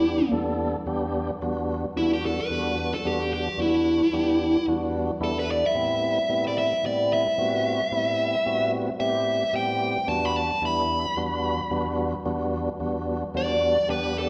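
A dark, smooth, overdriven electric guitar solos up front over a full, lightly overdriven tonewheel organ with key click and slow rotary-speaker vibrato, both carrying slapback echo for the whole 14.3 seconds of this brooding, smoky swung blues cut from a longer live gig heard through the venue's PA, where plate reverb and recital-hall ambience surround a move from Em7 to Am7 at 5.7 seconds and back to Em7 at 10.1 seconds.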